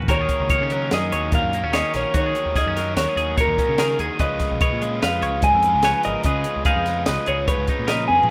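A rough home-demo mix in a moderate studio room carries this wistful, playful math rock and midwest emo excerpt at 146 BPM in 5/4, where a dark, slightly broken-up lo-fi guitar through a small old amp sings the fingered melody up front over a dry, punchy cocktail drum kit with a high-tuned snare, a growling overdriven picked bass, twangy arpeggios from a twelve-string electric, spring-reverbed accompaniment from a clean electric guitar, and a double-tracked overdriven guitar riff, moving from D#m11 to C#13 before a drum fill at 8.1 seconds.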